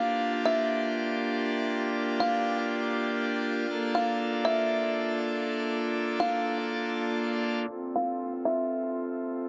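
A huge ambient reverb with a long 7.2-second tail and a low-pass filter softens this short, floating and blissful hip hop excerpt, set in F major at 120 BPM with a half-time feel. A majestic, brilliant full pipe organ sits up front with sustained chords in a romantic voicing, moving from Gm7 to Bbmaj7 and settling on F at 7.7 seconds, where a filter sweep begins. Above it, a buzzing kalimba carries the melody with woody, hollow, thumb-plucked notes, ringing through its own delay and low-pass filter until 9.2 seconds.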